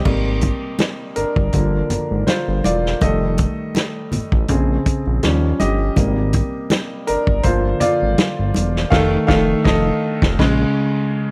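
A dry, close 1970s-style studio recording captures this short, romantic and smooth slice of lush soul at 81 BPM in 4/4, with a gentle 16th-note swing. A clear, intimate baby grand piano, its action noise audible, carries a solo through the whole clip over Abmaj7, Gm7, F7 and Bbm7–Eb7 changes, supported by a fat, detuned sawtooth analog bass and a punchy vintage acoustic drum kit of kick, snare, hi-hat and crash. Thick-skinned congas sit in the background until 8.7 seconds, and the band lands an accent at 8.9 seconds.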